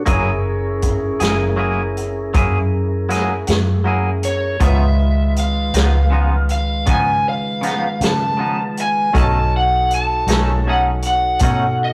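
A lead guitar through a small cranked amp cuts in at 4.2 seconds with an overdriven, up-front melody, giving this laid-back, gritty slow blues at 53 BPM in 12/8 its voice. Beneath it, a dark, foam-muted fingered electric bass sits round and punchy in the mix, while a vintage drum kit with a medium-tuned snare, punchy kick and hi-hat keeps a rolled-off, mid-forward pulse. A twangy, compressed clean electric guitar adds picked accompaniment through a tremolo effect, and a soft, flute-like tonewheel organ holds sustained chords through a slow rotary speaker. Further back, a brilliant, woody upright piano with audible action noise fills in the accompaniment. The harmony moves from F#9 to C#9 at 4.6 seconds and to B9 at 9.1 seconds, all captured in a rough rehearsal-room recording with saturation and a moderate stone room reverb, cut from a longer piece.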